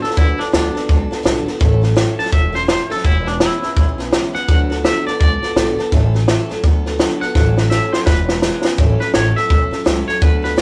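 A swung 167 BPM groove in 4/4 drives this upbeat, retro rockabilly snippet in A major, as a dry, compact cocktail drum kit up front pairs a punchy kick and high-tuned snare with hi-hat alongside a woody, thumpy pizzicato upright bass on gut strings. A twangy, clean electric guitar with harmonic tremolo carries the melody while a full-bodied jumbo steel-string acoustic guitar picks out D6, A6 and E6 chords. A drum fill arrives at 7.4 seconds and leads into a clean electric guitar solo at 8.8 seconds, all captured in a rough rehearsal-room recording with a modest small-room reverb.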